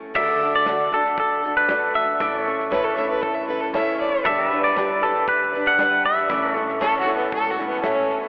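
Nostalgic and down-home, this short honky-tonk and classic country cut moves at 117 BPM in a straight 4/4, in D major, passing through D, A, G and A. A twangy electric guitar carries the melody up front, its bright, clean, compressed picked tone sitting high over a full-bodied dreadnought acoustic guitar, whose picking shows the odd finger squeak. In the background, a pedal steel guitar holds sustained chords with fingerpicks, slide and volume swells, while a detuned, jangly upright piano joins at 0.7 seconds. A single earthy fiddle with light vibrato enters at 2.7 seconds as a second line, sounding close and bowed. Underneath, a woody, thumpy pizzicato upright bass on gut strings and a dry 70s drum kit with a fat snare, tight kick and dark cymbals keep time. The whole mix is drenched in a cathedral reverb of vast, echoing space yet filtered to a thin telephone sound, giving it a distant, faded-memory quality.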